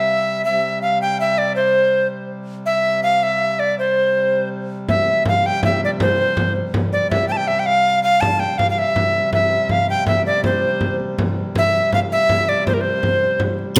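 Set in a wet recital hall, this fragment of a festive, ancient-feeling medieval dance in C major moves at 108 BPM in 6/8, with a close, up-front tenor recorder carrying the melody in a bright, reedy voice with chiff and vibrato over a nasal, breathing harmonium drone, while a compressed, saturated frame drum struck with hard hands joins at 4.9 seconds.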